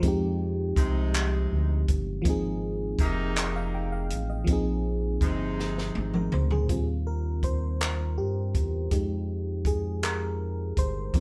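Tender and unhurried, this slow six-eight R&B fragment sets a glassy, bell-like FM electric piano with chorus over a deep, round analog bass and a tight, punchy compact cocktail drum kit of kick, high-tuned snare, hi-hat, toms and handclaps, while a distant, roomy horn section with light vibrato adds stabs from 0.8 seconds, a drum fill around 5.6 seconds leads into an electric piano solo at 6.7 seconds, and light reverb gives the feel of a band playing live together in one room.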